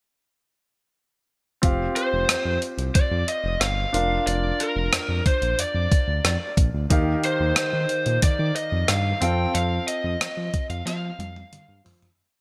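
At 1.6 s a gated 80s digital drum machine with a thumpy kick and a big gated-reverb snare backbeat, a smooth sawtooth synth bass playing a syncopated pop-funk line with muted ghost notes, and a clear, intimate concert grand piano holding long-sustained chords open this nostalgic, uplifting 1980s-style pop piece at 91 BPM, joined at 2.0 s by an overdriven lead guitar through a small cranked amp picking hook-phrase motifs over Fsus2, Bb/F, Ebadd9 and F in light reverb, before a drum fill arrives within the fade-out that begins at 9.5 s.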